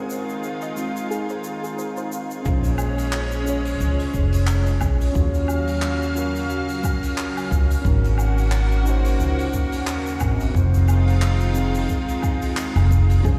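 Heard through a big sound system in a bare stone room, this relaxed sunset chillout excerpt carries a light reverb and a small-room ambience. It sits at 89 BPM in Bb minor, with a swung 16th-note feel. A mellow tine electric piano with delay plays the accompaniment, heard as if through its own built-in speakers, while a lush, detuned sawtooth-and-square unison pad with chorus holds sustained chords through Fm7, Bbm9, Ebm9 and Ab9sus4. In the opening, a soft, round pluck plays dark, gentle arpeggios with chorus and delay, set in the background. A very quiet, twinkling granular texture with an octave-up shimmer sounds alongside it, and both return briefly at 13.2 seconds. A brushed jazz kit with handclaps, hi-hat, shaker and woodblock keeps a natural acoustic pulse, and at 2.5 seconds a deep, tape-tinged electronic kick and a woody, growly pizzicato upright bass with tube saturation enter, the bass sitting up front.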